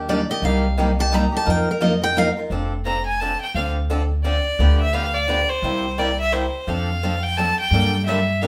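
A boxy swing-style acoustic guitar, with fresh strings and audible finger squeak, and a woody, thumpy pizzicato upright bass on gut strings open this playful, charming piece of jazz manouche in a swinging 3/4. A concert-toned steel-string acoustic guitar briefly carries the melody over a full-bodied dreadnought steel-string guitar accompaniment, which stops at 2.3 s and returns at 6.7 s. From 2.9 s, a bright, earthy solo violin with light vibrato and an airy bow takes the lead, as the band plays live in one room inside a short, wet studio reverb.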